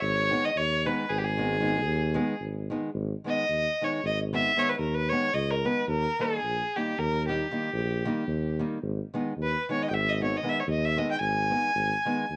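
In a straight 11/8 at 225 BPM counted in eighths, this virtuosic, restless Balkan wedding-band excerpt in G# harmonic minor sets a rich, smooth bowed fiddle with light vibrato and a cassette-tape tint over a roomy, classical-style tuba bass, with a small fingerpicked nylon-string guitar, also tape-tinged, picking out an accompaniment beneath; the fiddle breaks into a solo at 3.0 seconds as the harmony moves from G#m to D# and back, captured in light reverb as a home recording on cassette.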